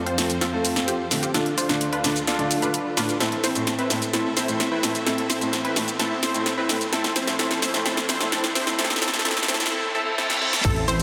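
This euphoric, emotional festival progressive house build-up at 129 BPM opens with a punchy, detuned supersaw stab riff, filtered and echoed with digital delay, over distant bowed strings holding sustained chords and a boxy baby grand piano, all pumping to the sidechain as the harmony moves through F, Dm and Am. A big-room kit with an up-front punchy snare, hi-hat, shaker and crash drives a long drum fill while a very quiet riser, reverse cymbal and sub drop build beneath a sweeping filter, all bathed in lush hall reverb and a dense, heavily limited master. At 10.6 seconds an impact lands with a layered electronic kick, a thick chorused saw bass on A1 and a bright unison pluck arpeggio, before the fragment cuts off at 11.0 seconds.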